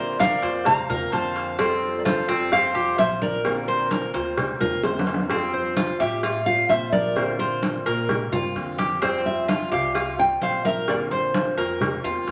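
A straight, danceable four-beat groove in the Cuban son and guajira style drives this sunny latin passage, with bright, damped congas played with hard hands alongside a tight, high-tuned cowbell and bongos that sound distant in a large room, all joining at 0.2 seconds. A classical nylon-string guitar carries the fingerpicked melody in a warm tone, while an up-front Cuban tres adds metallic, picked arpeggios on doubled strings, some of them octave-doubled. Underneath, a dark, boxy parlour steel-string guitar fingerpicks the accompaniment, its finger squeaks audible, and a woody, thumpy pizzicato upright bass on gut strings sits low in the mix. A close-miked trumpet with light vibrato plays a soft second line in the background until a drum fill at 4.8 seconds leads into a new section at 5.3 seconds. The harmony sways between Bbadd9 and Fadd9 with a brief Fsus2, and the whole is bathed in a lush large-studio reverb with a layer of vinyl crackle, giving this cut from a longer piece a vintage feel.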